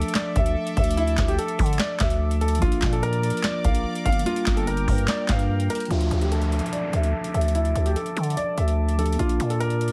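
Heavily compressed with a radio-like sheen and little reverb, this short excerpt of menacing, brooding trap-inflected hip hop moves at 146 BPM in a half-time feel, in D minor. A concert grand piano with audible action noise carries the melody through a low-pass filter, sounding intimate and natural, while a mellow tine electric piano, clean through its built-in speakers, plays accompaniment beneath it. An evolving sawtooth pad with slow attack and long release holds bright chords high above, coloured by chorus and its own low-pass filter. Up front, a growling, buzzy 808-style bass with fast attack and decaying notes anchors the low end, and an analog drum machine supplies a deep kick, crisp snare, handclaps and metallic hi-hats, with a short room on the snare, clap and hats and a tape-warm character. At 5.9 seconds the harmony returns from Gm7 to Dmadd9 as a filter sweep begins and an electronic downlifter sounds until 9.2 seconds, when a rootless Gm7 arrives.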